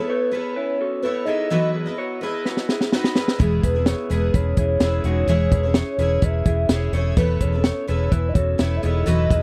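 Nostalgic and breezy, this short cut of jangly indie pop in straight 4/4 opens with a hollow, woody clarinet-like synth lead carrying the melody, its soft attack and vibrato treated with chorus and tape echo. Beneath it, a bright twelve-string acoustic guitar picks the accompaniment with a shimmering, octave-doubled ring and the occasional finger squeak. An electric guitar through a small old amp adds slightly broken-up, lo-fi arpeggios further back. A compact cocktail drum kit comes in with a fill at 2.5 seconds, putting a high-tuned snare and punchy kick up front, and a vintage muted fingered electric bass joins at 3.4 seconds with a round, foam-muted tone. The chords move from Aadd9 through B/E, E and C#m/E to Aadd9/E, all heard in a dry, close 1970s-style studio sound with little reverb.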